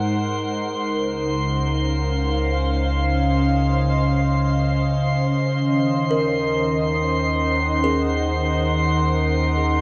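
Serene and reflective, this ambient excerpt at 52 BPM in Eb dorian sets an up-front, glassy FM pad with a warbling vintage shimmer over a deep, round sine sub bass and a drifting texture of chorused glass-harmonic overtones high above, moving from Ab7 to Dbmaj7 and settling on Ebm at 5.4 seconds, before a woody, hollow-boxed kalimba enters in the background at 6.1 seconds with bright, ringing arpeggios trailing diffuse delay, all bathed in a huge, wet reverb.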